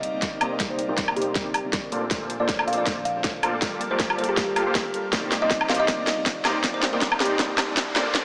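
A half-time future bass groove at 159 BPM with swung sixteenths drives this bittersweet, lush build-up in C dorian through Cm9, Bbmaj9 and Gm9, with a punchy electronic kick and an up-front dance kit of huge snare, metallic hats and woodblock playing a fill throughout. Detuned supersaw chords with 12-bit sampler grit and a woody, hollow kalimba melody both pump against the sidechain under filter sweeps, while a dark, mellow baby grand sits in the background and a very quiet, breathy pad hovers beneath. A faint riser enters at 6.4 seconds, and the mix carries a moderate, lush hall reverb and a thin, small-speaker tone.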